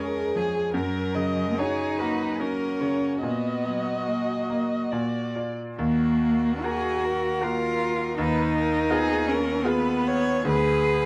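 Classical slow romantic movement for piano quartet in Eb minor, solemn and elegiac, moving in a rubato 3/4 at 68-83 BPM and tuned to A4 = 444 Hz, where a soft-attacked violin carries the expressive melody with vibrato and portamento over a rich, up-front cello second line, while a bright, brilliant concert grand with deep bass and a focused, smooth-topped viola accompany until the viola drops away at 10.3 s, the whole sitting in a moderate large studio reverb with a dark, warm production in this brief excerpt from a longer piece.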